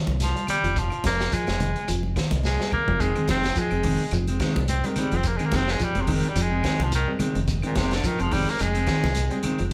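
A live band sound fills one large studio room, with a moderate reverb around this defiant, driving afrobeat excerpt cut from a longer piece. A clear, vintage baritone saxophone sits up front and solos throughout, its punchy tone carrying a touch of vibrato. Beneath it, a deep dub fingered electric bass stays round and dark, while a crunchy breakbeat drum kit, saturated and gritty with a tight kick and rolled-off top, drives the swung groove and drops a fill at 2.4 seconds. A semi-hollow electric guitar plays hollow-toned arpeggios in the background over a single Fm7 chord, and a clean, scooped electric guitar joins with picked stabs at 3.0 seconds. Bright, high-tuned congas played with hard hands sit back in the mix, with a grainy shekere and woody claves adding very quiet texture.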